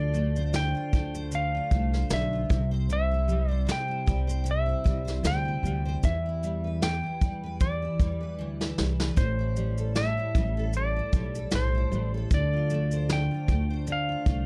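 Swung sixteenths at 76 BPM in 4/4 carry this easy-going, sunny acoustic pop passage, where a vintage brush kit with punchy kick, shaker and medium-tuned snare sits up front beside a woody pizzicato upright bass, a double-tracked, full-bodied dreadnought acoustic guitar picks through Dm7, C, Em7 and Am7, and a bright, twangy lap steel sings the slide melody through delay, with a drum fill at 8.4 seconds and a dark production touched by light reverb.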